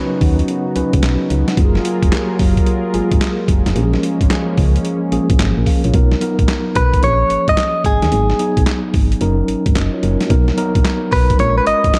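A mellow tine electric piano and a smooth, detuned analog pad with chorus open this flirty, bouncy new jack swing cut in F# major, moving at 110 BPM in 4/4 with a 16th-note swing. Almost at once a punchy, round FM bass with a fast attack and dark, decaying tone joins a gritty, sampler-style boom bap kit, its thumpy kick, medium-tuned snare, hi-hat and handclaps sounding pitched down, compressed and tape-warm, sitting up front. The pad drops out at 5.9 seconds as the harmony shifts from C#9sus4 and F#maj9 toward Bmaj7. At 6.8 seconds a bright, twangy clean electric guitar, picked, recorded direct and compressed with delay, carries the melody up front over a progression through A#m7, G#m7 and F#6. The production is dark with light reverb, and the piece is cut from a longer work.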